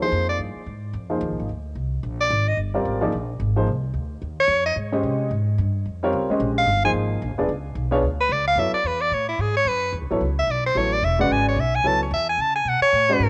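Intense and cool, this modal jazz excerpt swings at 220 BPM, with an edgy, forceful soprano saxophone soloing up front across the full 13.3 seconds, its vibrato punchy and its tone carrying the grain of cassette tape. A dark, mellow baby grand piano supplies intimate accompaniment with short sustain and audible action noise, moving through suspended thirteenth chords before settling into F# minor at 8.6 seconds. Beneath them, a woody pizzicato upright bass with steel strings anchors the low end, all set in a small room with light reverb and the homespun feel of a cassette home recording.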